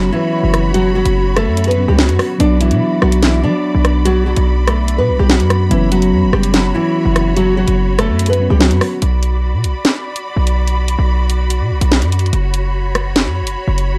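Drill-style hip hop in a half-time feel, this is a tense, cold passage cut from a longer piece, with a dark production and little reverb. A bright, fingerpicked nylon-string guitar carries the melody up front, over a mellow tine electric piano that sits filtered and clean in the background. A rich symphonic string section holds lush, bowed chords with vibrato throughout. A punchy, heavy 808-style bass with a fast attack and a noise layer hits hard up front, while the electronic drill kit adds a sharp snare, rim clicks and bright hi-hats with a tape-warm edge. The guitar and electric piano stop at 9.0 seconds, leaving strings, bass and drums to carry the final stretch over the chords Bm and F#sus4.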